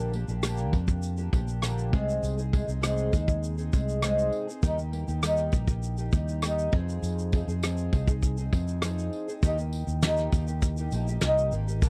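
Acoustic pop with an easy-going, heartfelt mood, this excerpt sets a shimmering, octave-doubled fingerpicked twelve-string acoustic guitar with subtle chorus against a dark, round fretless electric bass, both up front from the start. A soft brush drum kit with a fat snare, tight kick, rim click and shaker enters at 0.3 seconds, its top rolled off, while a jingly tambourine sits in the background. The recording has a dry, close 1970s-style studio sound, and the music moves into a new section at 9.4 seconds.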